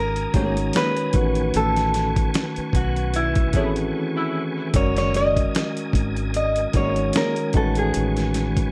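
A dark, intimate small-room sound frames this relaxed, soulful R&B and neo-soul excerpt at 75 BPM with a gentle sixteenth-note swing. A metallic, nasal lap resonator guitar plays the slide melody over a clean tine electric piano, with a fast-rotary tonewheel organ with key click sitting far back. Beneath them are a round, foam-muted dub bass and a gritty, thumpy sampler-style drum kit up front. A bright, fingerpicked nylon-string guitar weaves a background second line until 7.3 s, and a tight vintage horn section with tape echo stabs briefly from 3.5 s into a break at 3.9 s, over harmony moving between F#6/9 and Amaj9.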